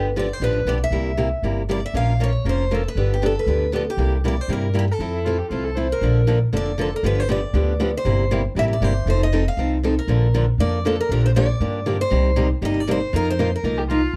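A brisk swing at 236 BPM drives this charming excerpt of jazz manouche, moving from F major into Bb major at 6.0 seconds. An up-front upright bass, woody and dark, anchors a second picked acoustic guitar that is warm and also up front. Over them, a bright, boxy parlour guitar carries the melody with slapback echo and plate reverb. A rich, nasal violin with vibrato adds a brief bowed second line at 5.1 seconds and again at the close, all within a dark, lightly reverberant production.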